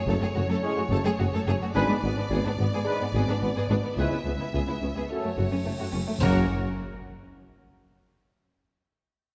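Lush, vibrato-rich violins open this relentless, epic orchestral film cue at 107 BPM in F# minor, one section carrying the high melody while a second traces a lower line, joined at once by dark, woody violas, a background tuba, expressive cellos and bowed double basses beneath chords moving from F#madd9 through G#dim and C#m7. At 0.6 s a very quiet French horn section and tight trombones add sustained chords while mellow, soft-attack trumpets place smooth stabs above, the orchestra sitting in a moderate scoring-stage reverb with a dark, warm production. A huge, bright cymbal swell at 5.6 s leads into an impact on an F# chord at 6.2 s that rings on after the orchestra stops, closing this excerpt from a longer piece.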